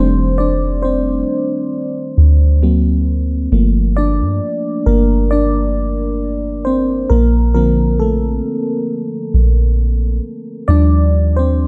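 Contemporary R&B at a slow 67 BPM with a gentle sixteenth-note swing in G minor, this moody, longing fragment of a longer piece features a mellow, round FM electric piano soloing throughout with a chorus shimmer through chords moving from F13 to Gm9 and on to Ebmaj9, over a deep, sine-like 808-style bass, both sitting up front in a dark production with light reverb.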